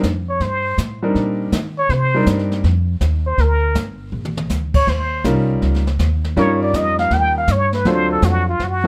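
A plunger-muted trumpet with a wah-wah bite and light vibrato takes a moody swinging solo from 0.3 seconds at 161 BPM in this short excerpt of small-group swing and bop, riding over woody, thumpy pizzicato upright bass, a dark-cymbaled brush kit with a boomy kick that drops a fill at 4.1 seconds, and an intimate baby grand with audible action noise that comps but pauses between 2.6 and 5.2 seconds, all in a light reverb over a Cm7, Gm, Eb7 and D7#9 progression.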